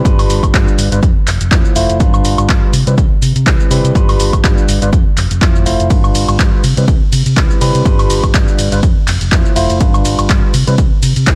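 A dry sound with little reverb frames this funky, joyful slice of filtered disco house, cut from a longer piece and moving at 123 BPM in 4/4 with a 56% swing on the sixteenths in G mixolydian. An overdriven tine electric piano, bright and barky through a combo amp, carries the accompaniment from the start with a phaser and sidechain pumping, cycling through G7, Fmaj7 and Cmaj7. Beneath it, a dark, round hollow-body short-scale fingered electric bass, amped and pumping with the sidechain, holds the low end for the full 11.3 seconds. From 0.1 seconds an overdriven, layered electronic kick drum hits hardest in the mix, joined by a punchy analog drum machine supplying handclaps, hi-hat, ride cymbal, shaker and woodblock, both re-recorded in a large room. The drum machine's hats, percussion and cymbals breathe with sidechain pumping, giving the groove a buoyant push.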